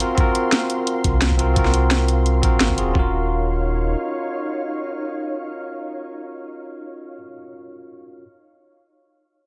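Soulful, rolling liquid drum and bass at 173 BPM in Eb dorian, cut from a longer piece, where a bright, bell-like tine electric piano with a low-pass filter sweep and dub echo sits over an ethereal, glassy FM pad with chorus and its own reverb, while a cracking layered snare and hi-hat with a gritty, thumpy kick drive briefly before falling away by 3.0 s, as a deep, full sub bass with octave joins at 1.0 s and the harmony moves from Ab13 to Ebm9.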